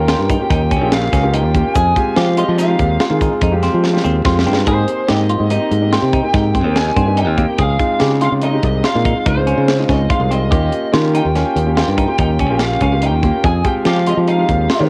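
A dark, overdriven lead guitar through a small cranked amp carries the melody from the first moment over a boxy grand piano with long sustain and a growly, bright fingered electric bass, joined almost at once by clean, compressed semi-hollow guitar arpeggios with phaser and analog delay and a tight funk kit with a punchy kick and high-tuned snare. This brooding, driving progressive band piece in 7/4 moves through chords such as Eb7, Fmadd9, Abmaj7 and Dbmaj7, with a faint, grainy egg shaker that drops out at 4.6 seconds as a drum fill leads into the second section. The lo-fi home-cassette sound keeps drums and bass up front in a small room with light reverb, and the clip is cut from a longer piece.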